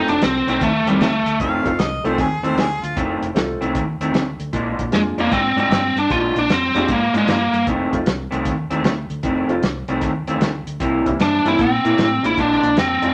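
A swung shuffle at 153 BPM in 4/4 drives this laid-back, gritty electric blues in F mixolydian, cut from a longer piece, moving through F7, Bb7 and C7 over a dry, dark soul drum kit with a tight kick and a fingered electric bass that is round and punchy. A slightly broken-up, lo-fi electric guitar through a small old amp plays the riff up front, while a clear, woody upright piano comps in the background until 12.4 seconds. A biting, overdriven lead guitar carries the melody in short bursts, and a bright, close-miked harmonica with light vibrato and scooped notes slips in a jazz-style line between 1.4 and 3.0 seconds, all set in a moderate studio reverb.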